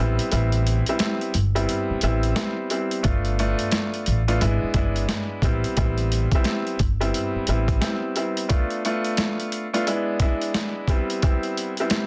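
A moody, dark boom-bap hip-hop excerpt in A minor at 88 BPM opens with a woody upright piano, up front and filtered through a cassette-tape haze, over the plucked pizzicato of a thumpy steel-strung upright bass that drops out at 7.8 seconds, while a gritty, pitched-down sampler-style drum kit, overdriven and compressed with a thumpy kick and high-tuned snare under swung hi-hats, enters at 0.2 seconds, all in light reverb with a dense, heavily limited modern master as the harmony moves from Am7 through G7 and E7 to close on Gadd11.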